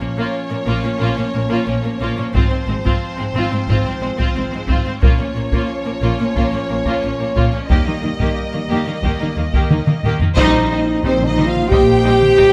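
This cut from a longer cinematic orchestral score opens on bowed strings in Bb dorian at 90 BPM: a smooth violin melody with vibrato, a distant second violin line beneath it, a clear, focused viola accompaniment, and a bass carried by a close cello section in the background and distant double basses. A French horn section holds sustained chords over them, giving the dark, relentless mood its weight as the harmony moves from Bbm through Fm/Ab and Eb. At 2.4 seconds a taiko ensemble enters, struck with heavy sticks and sounding close and dry, driving the build-up toward a drum fill. At 10.4 seconds the band lands on an accent over Cm/Bb, where a woodwind section adds sustained chords in the background and a very quiet, articulate timpani on Bb2 sounds briefly until 11.3 seconds. A moderate scoring stage reverb surrounds the lush string sound, while the piece holds a straight 4/4 to the end of the cut.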